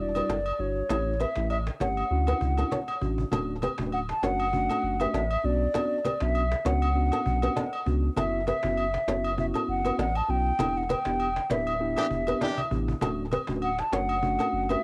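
An afrobeats groove at 99 BPM with a hypnotic, mellow mood, led up front by an airy, hollow concert flute with vibrato over a round sine sub bass, clean tine electric piano with analog chorus, fingerpicked flamenco guitar with tape echo, a woody cajon and distant agogo bells and woodblock, while a tight, clear horn section appears briefly at 12.0 s, all captured in a lightly reverberant home cassette recording cut from a longer piece.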